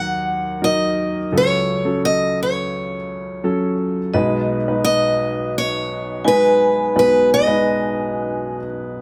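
A bright, up-front parlour steel-string guitar carries the melody in this intimate, nostalgic folk-pop ballad fragment, its picked notes catching the occasional finger squeak. Beneath it, a woody, boxy upright piano supplies the accompaniment with long sustain and audible action noise, moving through D#m and F#m/C# before settling on B6. At 4.1 s a vintage, band-limited vibraphone joins with metallic, ringing arpeggios from hard mallets and fast motor vibrato, all set in a light reverb.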